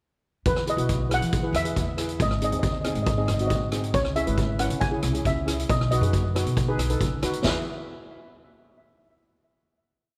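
A mellow, shimmering steel pan with tape echo carries a motif-based melody over a second pan's boxy triad chords, a growly pizzicato upright bass with a syncopated figure and a boomy, up-front street-band drum kit in a bouncy, carefree calypso groove, set in light reverb and ending on a final chord at 7.4 seconds.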